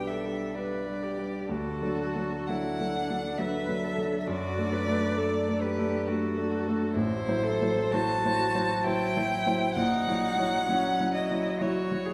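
Classical slow romantic piano trio movement at 65 BPM in 3/4, solemn and elegiac with uneven, rubato beats: an intimate, dark violin played sul tasto with light vibrato and a soft attack carries the melody from A4 to A5 over a warm, focused cello second line with vibrato and a mellow, vintage baby grand piano accompaniment with long sustain, the harmony moving from G/B through D and F#m7b5/A to F#7/A#, heard from further back in a 2.0-second scoring-stage reverb.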